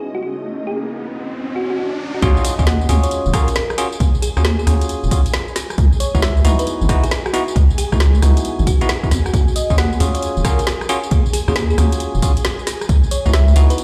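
Swung two-step garage at 135 BPM in 4/4, moody and soulful in Eb phrygian, this cut from a longer piece opens with a thumb-piano-like FM pluck melody carrying lush chorus, 12-bit sampler grit and dub echo, a bell-like tine electric piano stabbing through dub echo and a filter sweep, an ethereal pad pumping softly in the background with tremolo and ensemble chorus, and an electronic riser over Dbm11. At 2.2 seconds the drop lands on Ebm11 with a deep, saturated wobble bass sitting up front, a punchy tape-warm analog kick, and a layered garage kit of woody snare, metallic hi-hats, rim clicks and tambourine. The chords alternate between Dbm11 and Ebm11, and the mix sounds like a big sound system in a bare room with large studio reverb.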